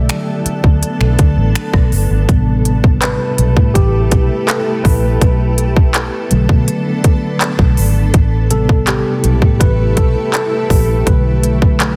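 Moody, late-night contemporary R&B at 82 BPM in a straight 4/4, cut from a longer piece, where a mellow, clean tine electric piano takes the lead as a solo over Bm7 and Am9 chords, a dark, foam-muted fingered electric bass sits up front, a produced trap kit brings a hard-clipped kick, crisp hats, finger snaps, handclaps, rim clicks and a soft-clipped snare, and a cloudy, detuned granular pad hovers behind with built-in reverb and sidechain pumping, all in a dense, heavily limited modern mix with light reverb.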